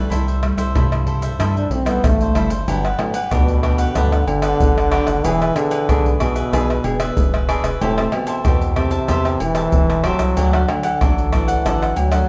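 Crisp picked cavaquinho, fingerpicked nylon-string guitar in the background and a rubbery, hollow square-wave bass open this sunny, festive samba and choro excerpt in G major at 94 BPM, joined by close, hard-handed tube shaker, deep surdo, pandeiro, tamborim and agogo bells up front, while a breathy, distant trombone whispers a second line at 1.6 seconds and again from 10.7 seconds, and a mellow, close-miked trombone carries the jazz-style melody with light vibrato from 3.0 seconds over chords moving from C6 to Gmaj7, E7, Am7/E and D, set in a wet large-studio reverb.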